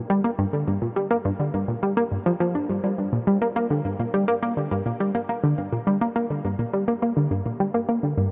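Ambient in G minor at 104 BPM, this mysterious, cosmic excerpt features a lone sequenced synth, tight and driving with a detuned sawtooth tone, filter pluck and chorus, mellow yet up front, its tape echo trailing into a huge reverb that hangs for 9.3 seconds across roughly 8.3 seconds.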